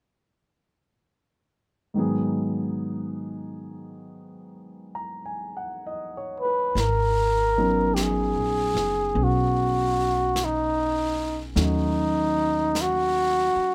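A jazz ballad cut from a longer piece, intimate and wistful, moving at a slow swung pace. A warm grand piano opens alone at 1.9 seconds, natural and up front, setting the harmony under a minor seventh chord. At 6.4 seconds a breathy flugelhorn takes the melody, mellow with a soft attack and light vibrato, sitting up front as the solo voice. The upright bass and a brush drum kit join at 6.8 seconds, the bass plucked and woody in its low register while the brushed snare and hi-hat stay quiet underneath. The harmony deepens to a minor eleventh chord and later shifts to a half-diminished chord, and the dry, close sound with little reverb keeps the small group feeling near at hand.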